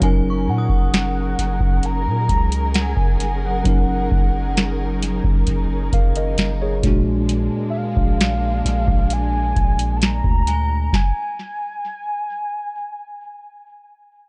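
A booming analog drum machine sets a slow, straight 66 BPM pulse in 4/4 with a deep kick, tonal snare and metallic hats, alongside an up-front, long, sine-like 808-style bass, for this late-night, longing contemporary R&B excerpt. A worn, slightly out-of-tune tine electric piano and a dark, woody string section with sidechain pumping hold the chords from F#6 to A#7b13, while a faint FM synth chime rings with ensemble chorus and tape echo in the background. From 0.5 seconds a velvety, warbling synth lead carries the melody through chorus and tape echo, and the band drops out at 10.9 seconds, leaving the lead to trail on in a dry, echo-heavy mix with a dulled top end.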